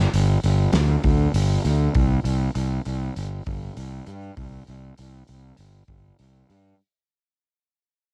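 A fuzzed, fingered electric bass and a loose indie drum kit start together at the very top of this short cut from a longer rock piece in the shoegaze and dream pop vein, set in a straight 4/4 with a dreamy, blissful mood. The bass sits up front, bright and growly, its overdriven tone sounding direct and amped as it holds to a low register. Behind it the acoustic kit of hi-hat, kick and snare sounds like it was captured in a studio room, with a fat snare, a punchy kick and a pumping sense of the space, all colored by cassette tape. The whole passage carries the dry, homespun character of a cassette home recording with little reverb. It is fading out from the first moment, with both parts dropping away by about 6.7 seconds.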